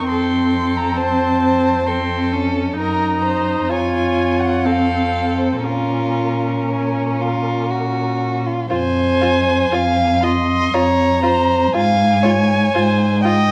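Classical string quartet writing in a slow, rubato romantic movement in triple time, yearning and melancholic, cut from a longer piece. A distant-sounding first violin carries the melody with vibrato and expressive portamento, over a focused second violin line, a smooth, even viola accompaniment and a warm cello bass that also slides expressively, all bowed by single players. The quartet sits in a moderate recital-hall reverb, heard through worn cassette tape whose warbly pitch drift adds an aged haze, and the music turns to new harmony at 8.7 seconds.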